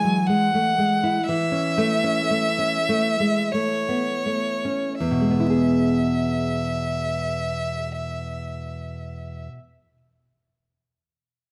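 A romantic duo for violin and classical guitar in E major and 3/4, this serene fragment from a longer piece moves in free rubato between 38 and 61 BPM, slowing over its first 5.0 seconds as the harmony shifts from E to A over E and back to E. Up front, a single bowed violin sings the melody in a rich, smooth and even tone with vibrato, while the thumb-plucked nylon-string guitar gives a warm acoustic accompaniment reaching down to E2 and carries on briefly after the violin finishes at 9.5 seconds. Close, detailed microphones and light reverb give the pair an intimate, clear sound, tuned to A4 = 441 Hz.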